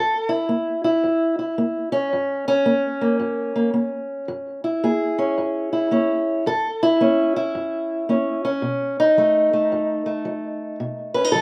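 Acoustic country blues with a rollicking, swaggering mood, this short cut from a longer piece rides a swung 4/4 feel. A lone fingerpicked steel-string acoustic guitar carries everything from 0.0 to 11.4 seconds, sitting up front with the dark, woody, boxy character of a parlour instrument strung with old strings. A slapback echo trails the guitar, and a light reverb adds a touch of air to an otherwise open-air recording that is free of any room sound. The harmony rests on F#7 before moving to B7 at 8.6 seconds, giving the brief passage its bluesy lean.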